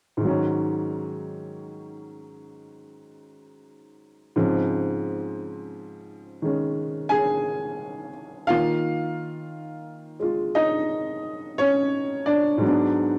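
Swinging and sophisticated, this short excerpt from a longer solo jazz piece moves at a relaxed 58 BPM in 4/4, its eighth notes swung in Db major. A lone upright piano carries everything, its warm, woody, boxy tone and short sustain sitting up front, with a cassette-tape character on the instrument that suits the home recording. It plays across a range from Ab2 to Ab5, opening on an Ab7sus4 and settling onto Dbmaj9/Ab at 4.4 seconds. A second section begins at 8.5 seconds with a Db69 chord, then turns toward Abm7b5 at 12.6 seconds before the fragment ends. A moderate studio reverb gives the piano a modest sense of room.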